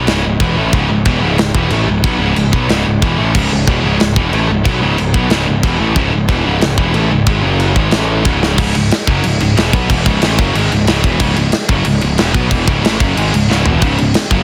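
Aggressive and heavy, this short cut from a longer heavy metal piece opens in a half-time feel before the drive tightens into a straight 4/4 pulse at 8.6 seconds. Two bright, high-gain distorted guitars pick out the riff from the start, sitting back in the mix while a growly, punchy fuzz bass with overdrive pushes up front beneath them. The acoustic drum kit enters at 0.1 seconds and is placed forward too, with a big-room sound, a medium-tuned snare, a tight kick with soft clipping, rolled-off top end, and crashes and china cymbal accents. Drum fills mark the turn at 8.4 seconds and again near the close, as the harmony moves from C# minor through F#5, G#5 and A5 power chords back to C#. The dense, heavily limited master keeps the whole assault compact and relentless.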